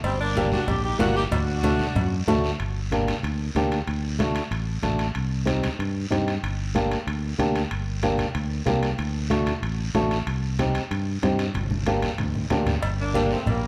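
Latin cumbia in G harmonic minor at 188 BPM, this fiery, passionate excerpt opens with an up-front saxophone section playing a jazz-style melody with vibrato and a soft attack; the horns drop out at 2.2 seconds and return briefly at 13.0 seconds. A round, punchy fingered electric bass and a dark, boxy, thumb-plucked flamenco guitar sit up front over the Gm, D and Cm changes. Ringing metal-shell cowbell and timbales, raspy guiro and distant, low-tuned congas in the background keep the groove moving, with a drum fill from 11.5 seconds, all set in moderate large-studio reverb.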